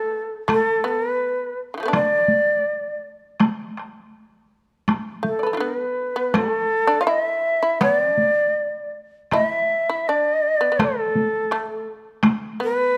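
Japanese traditional chamber music in 2/4 with a rubato feel, austere and solitary in this short excerpt cut from a longer piece. An airy, end-blown bamboo shakuhachi carries the melody with vibrato, chiff and a crisp attack, while a buzzing, plectrum-plucked fretless shamisen plays a percussive second line; both break off at 3.0 seconds and return around 5.3 seconds, as a compressed, saturated taiko ensemble struck with heavy sticks plays through nearly the whole passage. Close, detailed microphones keep the parts up front in light reverb.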